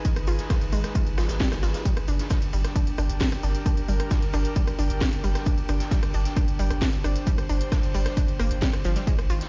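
Driving peak-time techno at 133 BPM in G phrygian, relentless from the start, cut from a longer piece and moving from Abm to Gm at 1.9 seconds. A heavy, overdriven electronic kick sits up front over a deep, saturated sub bass with sidechain pumping, while an overdriven kit adds a cracking snare, smooth hats, ride and rim click, and a gritty, mid-forward acoustic shaker and snare layer sits in the background. An airy, breathy pad with chorus and a bright, detuned unison pluck with dub echo both pump against the kick, and a very quiet swell sounds between 1.1 and 1.9 seconds, all played on a big sound system in a bare room with a top end that stops at 7.5 kHz.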